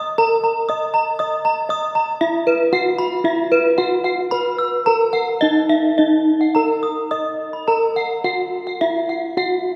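Brilliant and shimmering, this short gamelan passage, cut from a longer piece, moves in a straight four-beat pulse through a pelog scale. Two bronze metallophones with paired tuning ring together up front, their beating pairs giving the sound its shimmer. One carries the melody in the middle register, struck with a wooden mallet for a dark, smooth tone. The other spins arpeggios higher up, played with a horn mallet that makes it bright and airy, and it drops out just before the melody ends at 9.8 s. A wet concert-hall reverb surrounds the ensemble, and the music shifts into a new section at 6.0 s.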